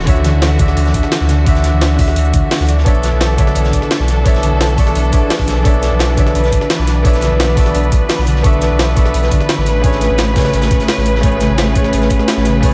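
Liquid drum and bass at 172 BPM, lush and uplifting, in which a bright grand piano with audible action noise and diffuse delay, veiled con sordino strings pumping under sidechain, a ringing thumb-plucked harp with tape echo, and a round, up-front sub bass move through Dmaj9, Bm11 and Amaj9, while from 0.1 seconds a knocking electronic kick, an overdriven, pitched-up jungle sampler kit with a high-tuned snare and shaker, and a saturated breakbeat kit sitting in the background drive the groove, all set in a dreamy cathedral reverb.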